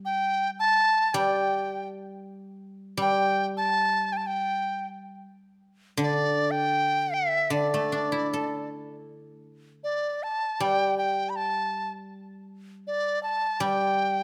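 Loosely rubato around 80 BPM in 4/4, this festive, graceful Chinese traditional passage, cut from a longer piece, sets a large bamboo dizi up front on the melody, its pure tone lit by a buzzing membrane, crisp attack and vibrato, over a bright, silvery guzheng played with fingerpicks whose ringing accompaniment begins at 0.0 s, all captured with close, detailed microphones in a moderate stage reverb, with a new section arriving at 9.1 s.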